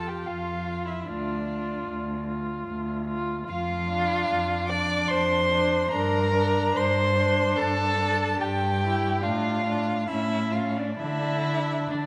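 Melancholic and solemn, this excerpt from a slow romantic movement for string quartet in D minor sways in a rubato 3/4 at 64-78 BPM, with a muted first violin singing a veiled, vibrato-laden melody with portamento above an up-front second violin line, a soft-edged viola accompaniment and a dark, up-front cello bass, all bowed by single players through a wet concert hall reverb as the harmony moves from Dm through Gm and A to close on D5 at 11.0 seconds.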